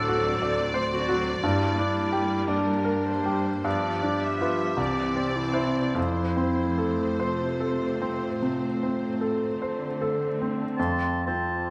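Passionate and lush, this slow, rubato romantic movement for piano and orchestra in F major moves at 48-62 BPM through a D7, G minor, G7, C to F progression. An intimate, up-front concert grand carries the melody with clear, polished tone and audible action noise, joined by a warm solo clarinet, a bowed violin section with smooth vibrato, a focused viola section in the background and dark, woody cellos holding the bass, set in a moderate recital hall reverb. The violins stop at 10.2 s, and as the lower strings finish, an oboe with light vibrato, a distant, airy flute and a mellow bassoon join the piano and clarinet at 10.8 s for the closing moment of this passage cut from a longer piece.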